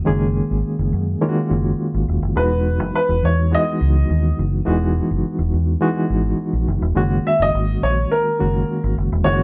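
A reedy electric piano opens this glamorous, danceable disco excerpt, its chords shimmering with a fast tremolo through the instrument's own built-in speakers. Almost at once a vintage electric bass joins underneath, foam-muted and fingered, giving a round, amped low end that sits up front. At 2.4 seconds a dark baby grand piano takes the melody, its mellow, natural tone carrying a short line in its upper middle register over the change to a lush major-ninth chord. The harmony returns home at 7.0 seconds as a new section begins, and the piece is cut off shortly after. The three players sound like a band performing together in one room, with light reverb and every part sitting up front in the mix.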